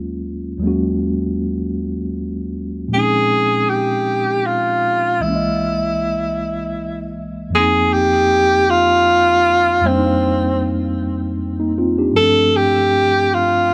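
Light reverb and a small-room ambience frame this sultry, yearning R&B fragment, a slow 6/8 at 52 BPM tuned to A4 = 441 Hz. A mellow, clean tine electric piano, heard as if through its built-in speakers, carries the extended chords from the start, moving from Ebm11 through C7alt. A tenor saxophone enters at 2.9 seconds with a jazz-style solo melody full of vibrato and scooped notes, its tone warm, punchy and roomy yet distant, as the harmony turns to F9sus4 at 7.5 seconds and ends on G9sus4.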